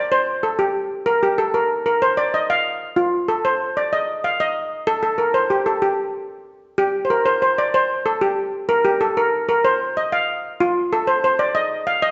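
Celtic folk in G minor and 6/8, driving, dark and lively at 126 BPM counted in dotted quarters, heard as a brief passage cut from a longer piece. A lone double-seconds steel pan carries the tune up front from start to finish, struck with hard rubber sticks for a metallic, shimmering tone between F4 and F5, with the opening phrase stated twice. The pan sits in a wet recital-hall reverb that lingers for about 1.4 seconds, and the sound is rounded off above 7.8 kHz.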